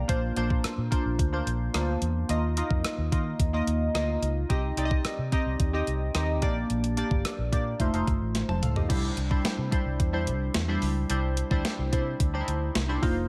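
1980s-style pop at 109 BPM in a glossy, romantic mood, this excerpt pairs up-front glassy digital keys, bright with a fast attack, chorus and phaser, over a round, punchy foam-muted fingered electric bass and a clean 12-bit drum machine with a thumpy kick, overdrive and gated reverb, moving through Bbadd9, Ebsus2, Cm, Gm/Bb and F7 before a drum fill at 8.3 seconds leads into a new section opening on Cadd9 at 8.9 seconds, all set in light reverb.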